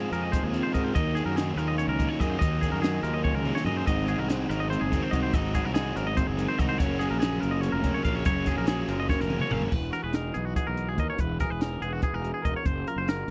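Running in 7/8 at 287 BPM in straight eighths, this bright, intricate math rock and midwest emo excerpt sets a slightly broken-up guitar through a small old amp against a clean, compressed twangy guitar picking arpeggios, a biting, double-tracked overdriven riff that drops out at 9.7 seconds as the second section begins, a growly fuzz fingered bass, and a compact cocktail drum kit with a high-tuned snare, punchy kick and rolled-off top that adds fills at 3.2 and 9.1 seconds, captured in a dry, close 1970s-style studio sound over chords moving from Fm7 to Gbmaj7.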